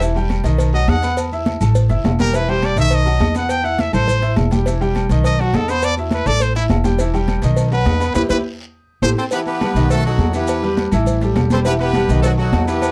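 A straight, driving salsa groove in 4/4 powers this danceable excerpt. A woody, pizzicato upright bass sits up front, over a background bed of damped, high-tuned congas, a round, low-tuned cowbell, ringing agogo bells and timbales, a raspy guiro and grainy, band-limited maracas. A brilliant grand piano with long sustain fills out the accompaniment throughout. From 0.7 seconds a punchy, present trumpet with vibrato takes the solo lead, and near its close a drum fill and a band accent carry the music into the next section. At 9.2 seconds a tight horn section in octave doubling takes over the melody with light vibrato and a clear, pop-style tone, all inside a dark production with moderate studio ambience.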